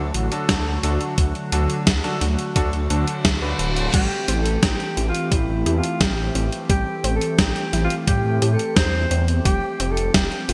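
A lush hall reverb and bright 1980s-style digital production frame this cinematic, nostalgic synthwave excerpt in A minor, moving at 87 BPM in a straight 4/4. A thick, detuned saw bass sits up front with chorus, tube saturation and sidechain pumping, beneath a mellow, shimmering pulse-width pad that holds sustained chords in the background and pumps along with it. A thumpy, tape-touched electronic kick and a gated 80s digital drum machine, its crash, hi-hat and gated-reverb snare placed up front, drive the groove. Brilliant, short-sustained grand piano stabs with digital delay punctuate the opening D chord until 3.7 s, and a reverse cymbal rises in the background from 3.0 s. At 3.9 s the harmony turns to Am7 as a breathy, distant alto saxophone takes a jazz-style solo with scooped notes and delay, joined by a very quiet, warbling analog pluck playing arpeggios, before the chords shift to Fadd9 at 9.5 s.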